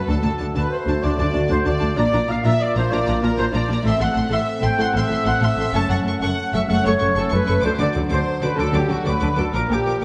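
A lush, vibrato-filled violin section and a clear French horn section open this soaring, triumphant heroic adventure film score, the violins singing a smooth second line over the horns' tight, sustained chords. At 127 BPM in 12/8, the rest of the orchestra arrives at 0.1 seconds. A distant, even violin melody floats high above, and dark, roomy trumpet stabs stand out as the most prominent voices alongside the basses. Focused, close violas fill in the accompaniment in the background. Below them, a warm, expressive cello section with a soft attack and a rich double bass section with a smooth top anchor the low end. The harmony moves from D through Bb, Am and F#m back to D and Bb, all set in a moderate scoring-stage reverb in this excerpt cut from a longer piece.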